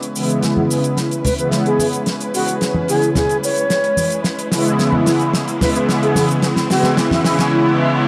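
Groovy and sensual, this short nu-disco build-up moves at 110 BPM in C# minor, resting on a C#m7 chord as a detuned, chorused sawtooth pad with tape echo sits up front and a veiled, con sordino string section holds sustained chords in the background. A damped 70s kit with a fat snare, hi-hat and cabasa plays a fill throughout, bright close congas join at 0.6 s, and a mellow, slightly unsteady silver flute with breathy chiff carries the melody from a distance through a low-pass filter and echo. An electronic riser rises in the background before a reverse cymbal closes the passage at 7.5 s, all wrapped in plate reverb and gritty cassette-tape character.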